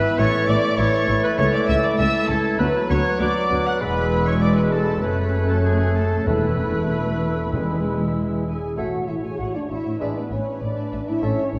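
Muted violins, veiled by the mute and bowed with vibrato, carry the melody of this stormy, restless classical-period orchestral movement in A major at 98 BPM, while a second muted violin section, a clear oboe, a very quiet mellow clarinet and a hollow, airy flute group weave supporting lines. Beneath them a clear bassoon and soft-edged violas accompany, a French horn section holds sustained chords with a vintage glow, and chamber cellos and double basses form a dark bowed bass. A distant trumpet adds clear stabs until 8.2 s, round soft-mallet timpani enter at 6.3 s, and the whole is bathed in a long, wet concert-hall reverb for a dark, warm sound.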